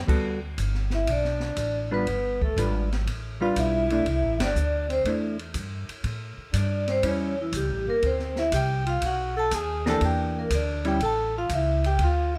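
A ringing vibraphone with medium hard mallets and a slow motor vibrato carries the melody in this cool, moody small-group swing excerpt, entering at 0.9 s alongside a breathy, whispered tenor saxophone that plays a close-miked, intimate second line. Beneath them a woody, growly upright bass sits up front with a clean, dark hollow-body electric guitar comping, while an open acoustic drum kit with dark cymbals, a high-tuned snare and a boomy kick keeps a swung pulse. The band hits a shared accent at 4.3 s, and light reverb gives the whole group a natural studio-room feel.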